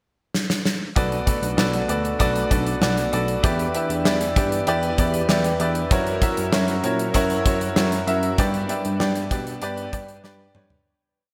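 A gated 1980s drum kit opens this dramatic, nostalgic pop piece in B minor at 97 BPM with a fill, its punchy kick and medium-tuned snare delivering a big, up-front backbeat in an airy gated room. At 1.0 seconds the verse arrives: a clear concert grand piano plays close-voiced eighth-note chords with shimmer reverb, a barky tine electric piano drives the bass in eighths, and a smooth, detuned sawtooth pad sustains chords in the background through chorus and phaser, moving from Bm7 through Em7 and F#7 to G. The bright digital production sits in a lush hall reverb, and the short piece fades out from 8.4 seconds, with a second drum fill closing it at 10.9 seconds.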